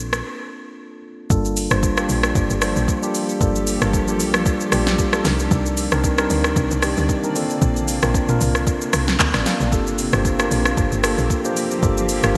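A mellow tine electric piano opens this late-night, soulful amapiano excerpt in G minor at 114 BPM, joined almost at once by a smooth R&B drum kit: soft kick, fat snare, metallic hats, handclaps, rim clicks, shaker and toms, all up front with overdrive and gated reverb and a sixteenth-note swing. At 1.3 seconds the drop lands with a woody, punchy log drum bass, and from 2.5 seconds a cloudy, detuned granular pad drifts in the background, blurred by its own reverb and chorus and pumping against the sidechain. The chords move through Bbmaj9, Gm9 and Cm9 under a bright 1980s-style digital sheen and a lush hall reverb.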